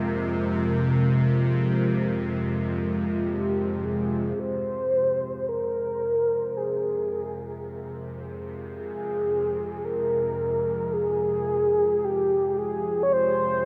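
Dark and ominous, this dark ambient drone drifts in free time, cut from a longer piece and set in a vast, echoing cathedral space with a long reverb tail and a softened top end. From 0.0 s, a bowed-like drone sits up front in the low register, string-like and tense, its detuned sawtooth voices carrying a noise layer, vibrato, a phaser and its own reverb. Alongside it, a deep, moody analog pad holds sustained chords in the middle register, thickened by a sub octave and chorus, and fades in as the music moves into its second section at 4.4 s. At 3.3 s, a mellow horn-like synth lead enters up front with a sustained melody. Its round, vintage tone warbles under chorus, vibrato and tape echo.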